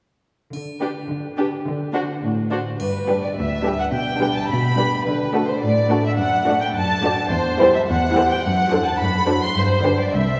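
A close, up-front violin section carries the sul tasto melody with light vibrato in this mischievous, quirky cinematic cue at 106 BPM in 2/4 and G major, joined at 0.8 s by a woody, distant second violin line and a pure, floating viola accompaniment over a soft-attack cello bass that begins at 0.5 s, while a background triangle sounds only until 3.9 s, the whole passage set in a wet cathedral reverb.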